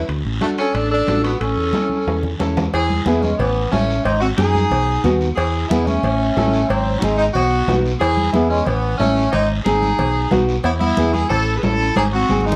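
A vibrato-rich saxophone section carries the melody up front with a soft attack and plate reverb in this sunny, joyful cumbia, joined by a breathy, mellow clarinet on the second line, a round, dark electric bass, a full-bodied nylon-string guitar, thick-skinned congas, ringing timbales and cowbell and a raspy, distant guiro, with a drum fill at 1.7 seconds and the worn pitch drift of old cassette tape over the whole recording.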